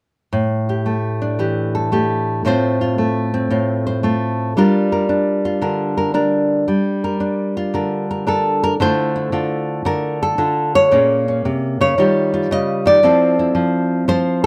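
Smoky and moody, this short solo jazz excerpt swings in 4/4 on a lone fingerpicked nylon-string guitar, full-bodied and up front with deep classical tone and audible finger squeak, moving through chords like A7sus4, Gm7 and Dm9 before a second section opens at 8.8 seconds and settles on Fmaj7 under light reverb.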